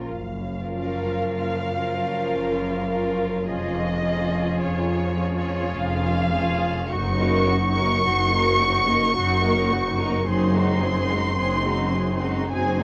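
A rubato 3/4 pulse at 53 BPM carries this lyrical, tender slow romantic movement for string orchestra in Db major, cut from a longer piece, where an up-front muted violin section sings a veiled melody above a second violin line, a lush viola section murmurs its accompaniment in the background, and cellos and double basses join at 0.1 s with a soft-attack bass, every section bowed con sordino with vibrato under light reverb and the haze of a worn cassette tape with warbly pitch drift and dulled highs.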